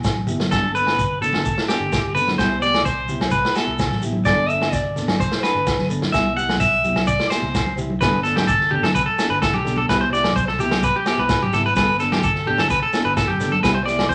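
A moderate large studio reverb gives this sunny, carefree highlife guitar band cut an open, roomy sound, with a twangy, slightly broken-up electric guitar up front playing arpeggios over a dark, clean electric guitar whose accompaniment carries a warbly pitch drift. A clean guitar solo runs through the first 8.0 seconds as the harmony rocks between Cmaj7 and Gadd9. Underneath, a round, amped fingered electric bass and a vintage acoustic kit with a punchy kick, medium-tuned snare and rolled-off top drive a straight groove, while ringing agogo bells, a grainy shekere and thick-skinned, band-limited congas sit in the background.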